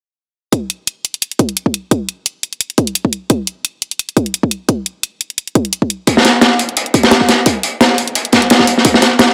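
A gritty, saturated breakbeat kit with a medium-tuned snare enters at 6.1 seconds over a punchy, up-front electronic kick and layered electronic hi-hat in this dry, lush yet melancholic drum and bass excerpt with a lightly swung feel.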